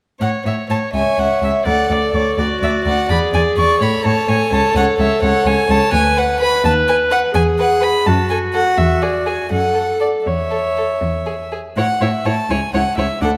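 This is a quick, spirited classical-period string quartet movement, cut from a longer piece, in a cheerful A major at 83 BPM in 6/8 with a rubato feel. The first violin carries the melody with an airy, nasal bow and a close, up-front presence. A darker second violin with a smooth top plays a second line beneath it. The rich cello anchors the bass, while the viola enters at 0.9 s with a warm, reedy accompaniment. All four players use gut strings in period style, tuned to A4 = 439 Hz. The harmony moves from A through C#m, D and E7, touches Bm/D and B/D#, then turns between E and F#m before settling back on A and C#m. A moderate concert-hall reverb of 1.9 s surrounds the group until the music breaks off at 13.3 s.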